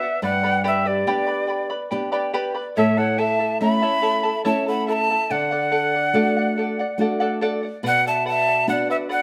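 A bright, airy cane quena carries the melody up front with vibrato, a crisp, chiffy attack and a slightly unsteady tone, joined by a softer tongued second line on a polished wooden pan flute, while a shimmering double-strung charango and a small, woody nylon-string guitar on old strings fingerpick the accompaniment in this melancholic, earthy Andean folk passage in 3/4, which moves through G, A, D and B minor in a moderately reverberant room and is cut from a longer piece.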